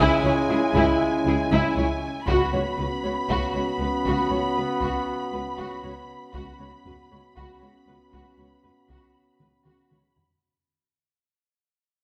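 A cut from a longer eerie, tense suspense film score opens with strings, brass and drums together: muted violins carry a veiled, con sordino melody high above a smoother second violin line, while darker muted violas sit in the background. Mellow French horns and clear, slightly vintage trombones hold sustained chords with light vibrato, moving from C#m to Bsus2/C# at 2.3 seconds. Close, bowed cellos anchor the bass on a single low note, joined at 0.2 seconds by distant, soft-attacked double basses on the same pitch. A taiko ensemble struck with hard sticks sounds in the background and plays a fill from 9.4 seconds. The whole passage fades out and sits in a wet scoring-stage reverb that makes the muted string sections sound shadowy and suspended.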